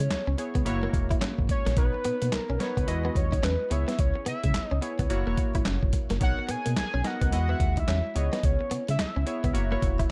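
A swung 16th-note groove at 108 BPM in 4/4 drives this punchy, bouncy new jack swing R&B excerpt in C# dorian. A gritty, pitched-down boom bap drum kit sits up front, with a thumpy kick, medium-tuned snare, hi-hat and handclaps, above a smooth gliding synth bass with portamento and vibrato. A fat, wave-folded analog lead with a sub octave and chorus carries the melody, while round, detuned analog keys with filter sweeps and a bright, clean, picked electric guitar riff fill out a C#m7–F#7–Bmaj9–Emaj9 cycle inside a dark, warm digital ambience.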